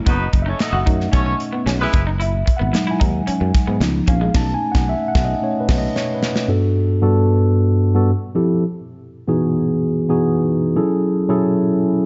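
A straight 4/4 groove drives this bittersweet, urban slice of polished 1980s jazz-funk pop, where a mellow, up-front tine electric piano with lush chorus takes a solo over punchy kick, a medium-tuned snare and bright cymbals, a growly fretless bass, a twangy, slightly broken-up picked guitar riff and a brief tight horn line with octave doubling and light vibrato. The band hits an accent from 4.3 seconds, crowned by a drum fill that ends at 6.5 seconds. From there the electric piano carries on alone through lush ninth chords in a dark production with light reverb.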